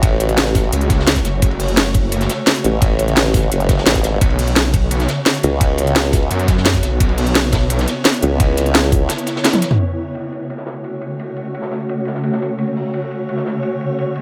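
Dark technical drum and bass, this tense excerpt opens mid-drop with a swarming, granular drone of detuned sine voices holding sustained chords under built-in reverb and sidechain pumping. Beneath it, a wobbling formant-sweep bass with chorus and compression sits up front until 9.1 seconds. It is joined at 0.7 seconds by a thick, lush detuned saw bass that also carries chorus and sidechain pumping. The drums stack an up-front electronic kit with a cracking snare, crisp hats and toms, a knocking layered electronic kick, and a quieter acoustic breakbeat kit that sounds gritty and saturated, its dark cymbals and rolled-off top tucked behind. A short drum fill arrives at 9.4 seconds. By the end of the drop the electronic kit, kick and both basses have dropped out, leaving the drone and the breakbeat kit over chords that move from F#m to Bsus2 and back to F#m in a dry, close mix.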